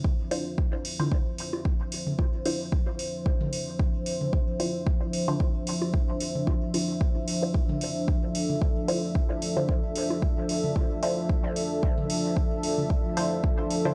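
Hazy and hypnotic, this lightly swung dub techno excerpt at 112 BPM in D minor rests on a single Dm9 chord, with a dark, detuned analog pad sustained up front under chorus and sidechain pumping, a deep, tape-warm kick from the start, metallic hi-hats and a muted, mellow filtered chord stab with phaser and dub echo entering at 0.3 seconds, and electronic toms and bongos joining at 1.0 seconds in the background with their own dub echo, in a dry, gritty recording touched by light reverb.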